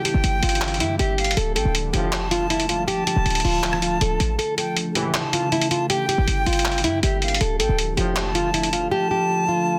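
A fingerpicked nylon-string guitar carries the melody in this melancholic, brooding trap piece at 159 BPM in a half-time feel in D harmonic minor, with a pure, vibrato-tinged silver flute tracing a second line above it through tape echo. Underneath, a deep, detuned ambient pad holds dark sustained chords moving through Gm, Dm and A, while a barely audible downlifter sounds in the first 1.4 s. A punchy, tight 808-style bass and a muffled, tape-warm sampler drum kit of handclaps, hi-hat and rim click sit up front, and a smooth brass ensemble drops brief echoed stabs in the background starting at 1.9 s. The kick briefly drops out at 4.4 s and the drums stop at 8.9 s, leaving guitar, flute and pad to finish the dense, heavily limited mix.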